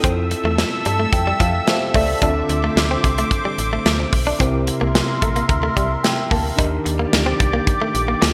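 A short excerpt of romantic, nostalgic 1980s-style pop opens with the full band at once. Punchy, up-front studio drums with a medium-tuned snare are bathed in gated reverb, beneath a snappy FM bass with a metallic attack and a tine electric piano pulsing with medium tremolo. Above them, a swirling sawtooth pad sustains detuned chords through phaser and chorus, its slow attack and long release giving it an evolving glow. A clean, compressed electric guitar, recorded direct and picked, plays a riff drenched in lush chorus and digital delay, sitting slightly back in the mix. The electric piano steps forward with fills from 0.6 to 2.2 seconds and again from 5.5 to 6.6 seconds, as the chords move from Fmaj7 through Dm7 and C7 to Ebmaj7. A moderate hall reverb and bright digital production give the track a glossy period sheen.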